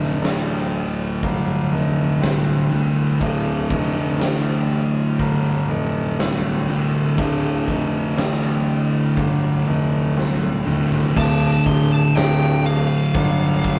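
Heavy and hypnotic, this excerpt of stoner and doom metal crawls at 60 BPM in D minor, with two thick fuzz guitars grinding out the riff, one up front and the other darker and set in the background, while a clear, present grand piano pushed through overdrive carries the low bass line. A big acoustic rock kit with a fat snare and tight kick sits in a bright stone room, playing a drum fill at 10.2 seconds. At 11.2 seconds a dark, compressed fuzz lead guitar takes a high solo, all captured with a rough rehearsal-room feel and tube saturation.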